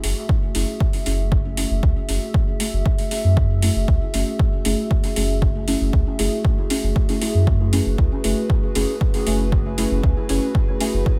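Hypnotic and meditative, this short dub techno cut sets a dark, slow-attack analog pad with chorus beside a mellow, detuned chord stab carried on dub echo, chorus and phaser under a filter sweep. Both sit over a round, soft sub bass, the three pumping together in a single F#m9 chord, with a punchy, up-front kick from 0.3 seconds and overdriven metallic hi-hats.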